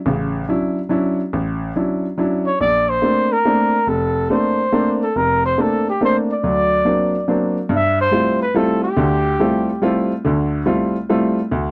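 Searching and open, this fragment of a swung jazz waltz at 142 BPM in 3/4 opens with a clear, short-sustained baby grand piano comping through Dmaj9 and Bbmaj9. A dark, breathy solo trumpet with light vibrato and scooped notes carries the melody from 2.5 s to 10.1 s, across a shift through Daug7 into a G13sus4 second section at 7.7 s, all in a dry, close 1970s-style studio sound with a touch of light reverb.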